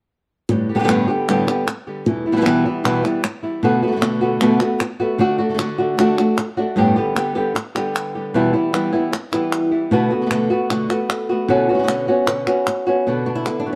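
A fingerpicked flamenco guitar carries a mournful, dramatic melody up front, with audible finger squeak, while a second fingerpicked guitar adds stabs and crisp, close palmas hand claps enter at 0.9 seconds, all moving at 153 BPM in B minor through a Gadd9, Em, Bm7 and D progression that settles on Bm, set in a dark production with a stone room reverb in this short cut from a longer piece.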